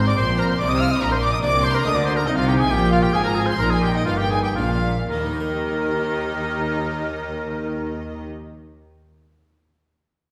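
In a straight 3/4 pulse between 109 and 145 BPM that slows from 1.6 to 5.1 seconds, this festive, brilliant fragment of a baroque-style concerto movement in Eb major has a soft-attack oboe with vibrato carrying the solo melody alongside a focused violin section, while a second violin line with a smooth top sits in the background. Beneath them, a bright, plucked Flemish-style harpsichord and a bowed viola section fill in the accompaniment, and a lush, up-front double bass section joins an expressive, distant cello section on the bass line, with the harmony settling on Eb at 5.1 seconds. The ensemble is heard from further back in a wet recital hall, lending the sound a resonant chamber glow.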